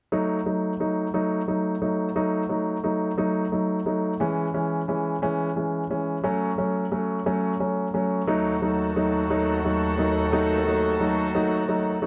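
A slow, straight 6/8 pulse counted in dotted quarters gives this pop excerpt a patient, swaying rhythm, and the mood is dramatic and aching. A concert grand piano carries the accompaniment from the start, sitting up front in an intimate, polished tone with deep bass, long sustain and audible action noise. The harmony opens on an unsettled D#dim, moves through C#m/E and F#m, and lands back on D#dim. At 8.3 seconds, as the second section begins, a chamber string section joins with sustained bowed chords in a nasal, reedy, gut-string tone with a smooth top and period-style character, also placed up front. A moderate studio reverb and a dark, warm production give the fragment a shadowed glow. It cuts off at 12.1 seconds, as it was taken from a longer piece.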